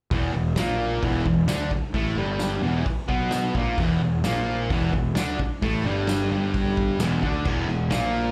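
Heard as a live club gig through the venue's PA, with a light club reverb, this short, raw and rowdy garage rock cut opens on an E5 chord. A double-tracked, compressed fuzz guitar drives the riff up front with distortion and slapback echo, while an overdriven, punchy picked bass growls underneath. A gritty, saturated drum kit with a punchy kick and a rolled-off top keeps a straight beat, joined by a jingly tambourine from 0.6 seconds.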